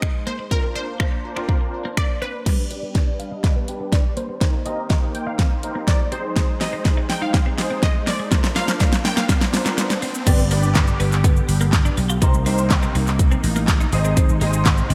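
A bittersweet, driving dance-pop excerpt at 123 BPM opens on a bright, detuned unison pluck melody with phaser and delay. Beneath it sit a soft-edged supersaw chord swell pumping in the background, a twangy twelve-string electric guitar riff, and an up-front pop drum kit with punchy kick, fat snare, metallic hats, claps, snaps and gated reverb, and an intimate concert grand piano with audible action noise joins almost at once. A very quiet riser and a filter sweep lift a build-up with a drum fill, the pluck stops at 9.4 seconds, and at the drop at 10.3 seconds a growly vintage slap bass enters, all within light reverb and a 1980s-style digital production.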